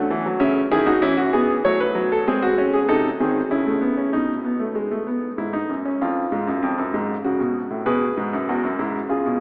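A baby grand piano opens this short passage from a longer baroque-style fugue in three voices. Its tone is clear, natural and up front, ranging from E2 to F#5 at a lively yet stately 97 BPM in 3/4 with a straight feel. The harmony opens in C# minor, passing through F# minor and G#7 before returning home. A second section begins at 4.1 seconds, moving through B7, E/G# and a surprising F minor before settling on Eadd9. The solo piano sits in a wet cathedral reverb with a long five-second tail, and the whole recording carries the character of AM radio.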